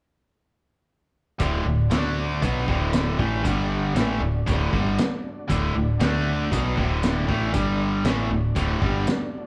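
Confident and sunny, this classic rock excerpt catches a band playing live together in a large studio room, with two bright, overdriven electric guitars picking a riff from 1.4 seconds, one crunchy and up front and the other biting. Underneath, a punchy, foam-muted fingered bass and a cloth-damped, thuddy drum kit with a fat snare, tight kick and hi-hat carry a straight feel, the drums muffled, gritty and lo-fi with a rolled-off top. A very quiet, clean tonewheel organ holds sustained chords through a slow rotary speaker until 9.5 seconds as the harmony moves between D and G5.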